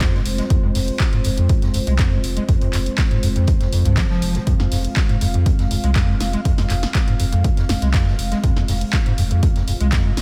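An overdriven acid bass leads this raw, driving acid house excerpt, its squelchy, resonant square-wave riff plucking through a filter with a gritty bite, thickened by ensemble chorus and a diffuse ambient delay. Beneath it a saturated sub bass holds deep, thick triangle tones, pumping against the beat, while a smooth, detuned sawtooth pad sustains soft-attack chords on a single F minor harmony, shimmering with chorus and breathing with sidechain pumping. An electronic kick sits up front with a punchy, tape-warm thump, joined by an analog drum machine whose punchy snare, handclaps and hi-hats ring in a short room. Far in the background, a very quiet acoustic drum kit adds a natural studio-room hi-hat and high-tuned snare. All parts play together from the start to about 10 seconds in, under a light reverb, in a steady straight four.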